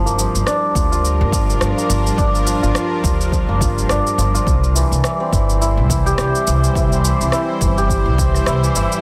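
Mystical and hypnotic, this short cut from a longer organic downtempo piece moves at 105 BPM in 4/4 with a swung sixteenth-note feel, sitting in G dorian as a Gm7 chord gives way to C at 4.5 seconds. Up front, a hammered santur spins bright, shimmering arpeggios through a low-pass filter and tape echo, while a woody, thumpy pizzicato upright bass anchors the low end with a sidechain pumping motion. Beneath them, a tense, detuned sawtooth drone with a string-like, bowed character holds sustained chords, its slow attack and long release colored by phaser, vibrato and its own reverb, and it pumps against the beat as well. The rhythm comes from tape-warm electronic cabasa and rim click, with soft clipping on the snare, joined at 0.8 seconds by a punchy, layered, overdriven electronic kick. Hovering very quietly over it all, a pure, airy quartz singing bowl struck with a wooden striker rings with slow beating, and the whole is set in light studio reverb with a dense, heavily limited modern master.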